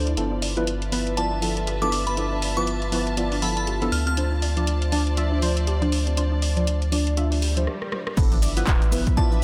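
Late-night and moody, this deep house excerpt moves at 120 BPM in 4/4 with a swung sixteenth-note feel. Mellow, detuned chord stabs with ring modulation, a moving notch, chorus and analog delay carry G13 and Dm7 harmonies over a round, sine-like analog bass that sits up front, and both pump with sidechain along with a dark, softly bowed string section played sul tasto with light vibrato. A warbly, lo-fi pluck with nasal 12-bit grit traces arpeggios in the background, while a punchy analog drum machine supplies crash, handclaps, hi-hat, rim click and shaker, re-recorded in a large room. A crystalline FM synth bell, treated with chorus, phaser and delay, carries the melody from 1.2 to 4.1 seconds and returns briefly at the close. An electronic swell arrives at 7.4 seconds, the groove stops for a drum fill at 7.7 seconds, and at 8.2 seconds the drop lands with an up-front electronic kick. 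The mix is echo-heavy with light reverb.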